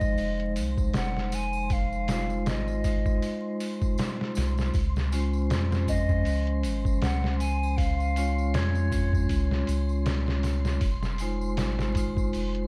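A brooding, hypnotic trip hop fragment opens with a muffled, pitched-down sampler drum kit thumping up front under a deep, round dub sub bass, while a ringing vibraphone with tremolo, soft tambourine and triangle in the background, and an airy wind-like tuned noise haze drift over Fm7 and Dbmaj7 chords, as a breathy, close-miked silver flute sings an expressive tape-echoed melody until 9.7 seconds, all wrapped in dark production and vinyl crackle.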